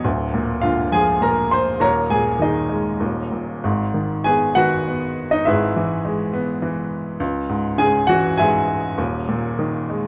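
A bright, woody upright piano plays alone for the full 10.1 seconds, close and intimate, its short sustain and audible action noise giving each note a tactile edge. This lyrical classical piece sits in G# minor and 3/4, moving with rubato at roughly 94-105 BPM, its moody, bittersweet harmony passing from A#7/D through D#7sus4 and G#m7 to C#m before settling on D#sus4. A moderate studio reverb and a dark production frame the polished instrument in this brief passage taken from a longer work.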